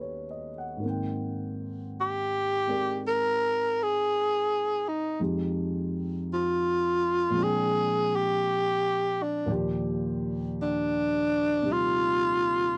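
A dry, close studio sound in a 1970s style puts both players up front, with little reverb around them. This short jazz excerpt, cut from a longer piece, moves at a slow 56 BPM in 4/4 with a swung eighth-note feel in Eb major, setting a romantic, late-night mood. A dark, mellow grand piano opens alone at 0.0 seconds, its long sustain carrying the accompaniment across a span from Eb2 to G5. At 2.0 seconds the tenor saxophone enters with the solo melody in a narrow range from D4 to Bb4, its breathy subtone, raspy grit, growl and vibrato sitting clearly above the piano. The harmony moves from Eb7alt through Abmaj9, Fm7 and Bb13 before settling on Ebmaj9, and both parts play on until the fragment ends at 12.8 seconds.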